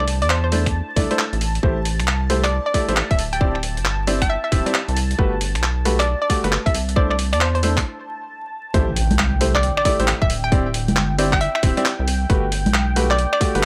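Swung sixteenths skip over a tight electronic kick and a gritty, compressed sampler-style breakbeat kit of congas, finger snaps, handclaps and hi-hat in this late-night two-step UK garage cut at 135 BPM, where a rubbery, wave-folded square bass sits up front beneath a nasal, detuned square pluck melody with chorus and tape echo, clear yet worn grand piano stabs, and a smooth sawtooth pad with chorus and sidechain pumping in the background, the dry hardware recording carrying transformer saturation and vinyl crackle as the track pauses for a break at 7.9 s before the drop lands at 8.7 s with a faint impact.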